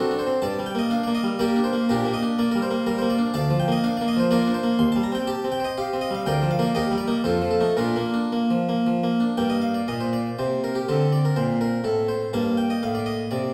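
In a rubato 3/4 at 123 BPM, this introspective, flowing excerpt from a baroque-style classical suite movement features a solo harpsichord with a round, full, plucked tone on one set of strings, ranging from D2 to C6 in G minor before turning to Bb major at 3.4 s and returning to G minor at 9.4 s, all set in a recital hall reverb.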